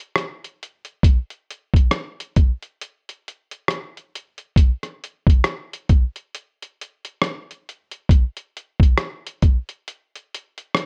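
A lo-fi, sampler-style drum kit comes in at 0.2 s and carries this short hip hop excerpt on its own until it ends at 10.9 s. The kit uses hi-hat, kick drum and rim click in 4/4, with a gentle swing on the sixteenths that gives the groove a relaxed, loping feel. Its sound is compressed and muffled, and a thumpy kick sits up front in the mix. The production is dark with very little reverb, so the drums feel close and dry. The mood is reflective and melancholic, like a quiet passage taken from a longer track.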